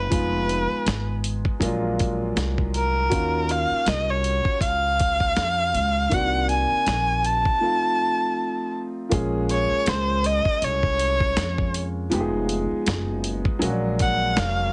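Nocturnal, smoky jazz-hop excerpt at 80 BPM in Bb minor with a 16th-note swing, where an up-front, dark bowed erhu sings the melody with vibrato and portamento over intimate upright piano chords full of audible action noise and long sustain, a growly pizzicato upright bass, and a gritty, compressed sampler-style soul drum kit with a thumpy kick, medium-tuned snare and hi-hat, all heard through light reverb and a heavily compressed radio-like sound, with a break at 7.6 seconds before the erhu takes a solo from 9.1 seconds to the end.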